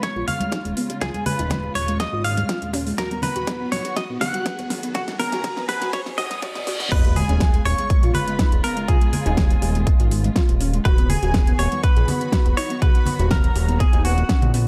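Dreamy and emotional, this progressive house passage at 122 BPM, cut from a longer piece, builds through filter sweeps on a soft, round, chorused pluck arpeggio and a dark, woody, distant symphonic string section, with a drum fill and a very quiet electronic riser and reverse cymbal leading to the drop at 6.9 seconds, where an impact and sub drop land. A bright, twangy, direct-recorded clean electric guitar carries the melody with digital delay over a smooth, detuned supersaw second line, while a fat, nasal, saturated analog bass and the strings pump with sidechain beneath the chords Db7/Eb and B/D#. Driving it all is a punchy, overdriven, up-front electronic kick layered with a pop kit's fat snare, metallic hats and crash, plus close, hard-handed bongos and congas in the background under light reverb.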